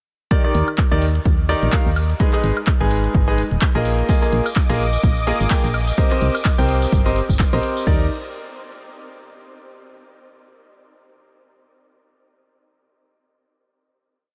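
Euphoric, uplifting piano house at 127 BPM in Eb major, with a swung 16th-note feel, where a clear, polished concert grand plays an up-front chord riff with tape echo and sidechain pumping over an overdriven four-on-the-floor electronic kick, punchy analog drum-machine claps, hi-hats, woodblock and crash, and a round FM bass in a dotted rhythm. At 4.1 s a silky, bright analog string pad enters in the background with ensemble chorus and held high notes, joined by a tambourine, as the chords move from Ebmaj7 through Abm, Bb7sus4 and Cm7. The whole piece is a short drop that resolves onto a final Ebmaj7 chord at 7.9 s, set in light reverb.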